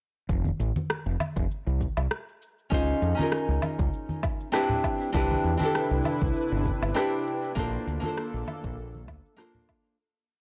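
Relaxed and smooth, this short sunset chillout piece rides a light, swung lounge groove built on a soft, deep electronic kick, overdriven cabasa, rim click and woodblock, and close, acoustic congas, all under a growling, punchy fingered electric bass playing a syncopated riff up front. At 2.7 seconds a dark, fingerpicked nylon-string guitar enters with tape echo, holding rootless chords with syncopated pushes through a Dbmaj9, Cmaj9 and Bbmaj9 progression. At 5.7 seconds a breathy, detuned pad with chorus and a slow attack joins, just before the dry, gritty recording begins a fade-out at 6.8 seconds.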